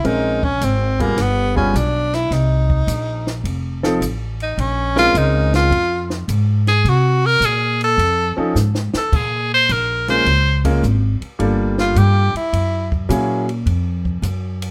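Swinging in 4/4 at 106 BPM, this cool, late-night small-group jazz piece in Bb minor pairs a dry cocktail drum kit (dark cymbals, punchy kick, high-tuned snare) and a thumpy, woody pizzicato upright bass up front with clear, intimate baby grand piano accompaniment that carries audible action noise, while a bright tenor saxophone in plate reverb solos with vibrato and scooped notes until 12.9 seconds, and a brief drum fill at 8.6 seconds leads into the second section.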